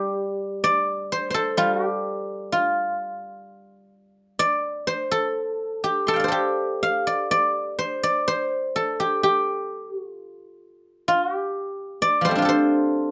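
The rhythm moves freely in a rubato feel over a loose 2/4 pulse, letting each phrase breathe at an unhurried pace. This is a short fragment of traditional Chinese solo plucked-string music, cut from a longer piece and lasting about 13.1 seconds. A lone guzheng carries everything, played with fingerpicks that give its acoustic tone a silvery, ringing edge, and it sits up front in the sound. Its lines span from F3 up to C6, covering the instrument's lower body as well as its bright upper register with a flowing, elegant grace. A light reverb adds a gentle sense of space around the plucked notes, keeping the recording intimate and clear.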